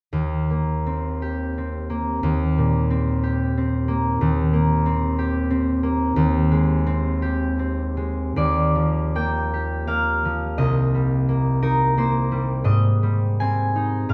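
Dreamy and peaceful, this short excerpt of a classical solo harp piece unfolds in Eb major at a flexible, rubato pace between 71 and 93 BPM in 3/4 time. A concert harp carries everything alone from 0.1 to 14.1 seconds, its bright, ringing fingerpicked tone sitting up front and spanning from C2 up to Ab5. The harmony drifts gently from Eb6 through Abmaj7/Eb, then opens at 8.4 seconds into a second section built on Ebmaj9, Cm7 and Abmaj7. Those lush seventh and ninth chords give the music a soft, suspended glow. A moderate recital hall reverb surrounds the instrument, lending the sustained strings an airy halo while keeping the playing clear and intimate.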